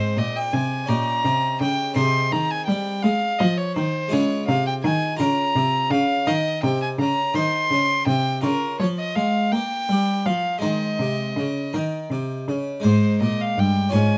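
Serene and flowing, this short excerpt from a baroque-style sonata movement in Ab major moves at 55 BPM in a straight 6/8, with an up-front violin singing a warm, gut-string melody in period style, a brilliant, Italian-style harpsichord with three sets of strings providing plucked accompaniment, and a rich, reedy bowed cello carrying the bass, all captured by close, detailed microphones in light reverb, with the harmony settling back onto Ab at 12.9 seconds.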